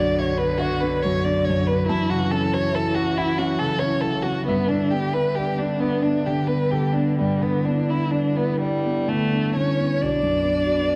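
Opening at once on a Bmadd9 chord, this fragile, longing neoclassical passage in B minor drifts in a rubato 6/8 at about 42-47 BPM. An up-front solo violin carries the focused, vibrato-laden melody through a touch of slapback echo, while a smooth bowed cello traces a second line in the background. An intimate concert grand with deep bass and audible action noise supplies the accompaniment, and a very quiet, chorused sawtooth pad holds sustained chords beneath, set within a wet scoring-stage reverb and a dark production as the harmony moves through F#m7, G and Em7/G to settle on Bm.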